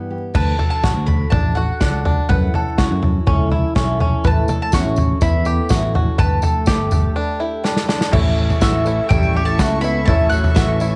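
Indie folk with an anthemic, nostalgic mood and a building arrangement, moving at 123 BPM in A mixolydian, with a round, dark electric bass beneath a punchy, up-front country drum kit, a shimmering, octave-doubled twelve-string guitar, a woody picked mandolin carrying the melody and twangy fingerpicked banjo arpeggios, those last four steeped in cassette tape character amid vinyl crackle and a home-recorded feel. A jingly tambourine and a mellow French horn second line with light vibrato join at around 4.2 seconds, and after a drum fill a worn, slightly detuned upright piano and a dark, bowed chamber string section playing sul tasto arrive at 8.1 seconds, both sitting in the background. The chords move from D through F#m7, A and Gadd9 before landing back on A, and the passage is cut from a longer piece.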